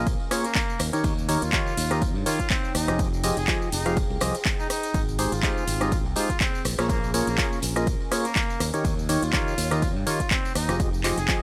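A dry, gritty recording with transformer saturation and light reverb carries this energetic, soulful piano house passage at 123 BPM, swung on the 16ths and moving through Bbm7, Eb7, Fm9 and Abmaj7. A hollow, mellow organ stab riff with analog chorus and cassette tape character pumps against a punchy overdriven kick and an up-front house kit with metallic hats, claps, ride, rim clicks and tambourine, while a bright, growly fingered electric bass drives underneath and a barely audible downlifter ends by 1.0 s. A second tambourine sits in the background beside a dark, warbling tape-like pad, and from 0.4 s a warm, distant trumpet with light vibrato and tape echo sings the soloing melody.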